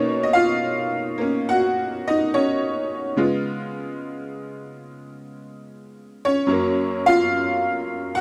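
A jangly, metallic tack piano carries this brief solo jazz fragment on its own from 0.0 to 8.2 seconds, covering a broad span of the keyboard. The mood is moody yet swinging, with a loose, rubato feel that lets the eighth notes lilt with a gentle swing. The harmony moves from Bmaj9 to Db7 and then settles on Gbmaj7, giving the short passage a rich, searching colour. The instrument sounds vintage and percussive, its bright, slightly boxy tone sitting up front in the mix. Close, detailed miking and a dry room keep every attack clear, and the piece is cut from a longer performance.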